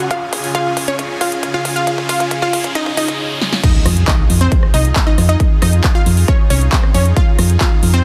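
Uplifting trance with a bittersweet, driving mood, cut from a longer piece, where a build-up of riser and drum fill gives way at 3.6 seconds to a drop marked by a background impact. A bright, detuned unison pluck carries the melody with dub echo and sidechain pumping over a lush supersaw pad holding slow-attack chords, while a punchy, up-front electronic kick drives the beat and a round, dark FM bass enters at 3.9 seconds. The big-room kit adds snare, handclaps, rim clicks, crash and metallic hats, the mix sitting in a moderate hall reverb under a dense, heavily limited master.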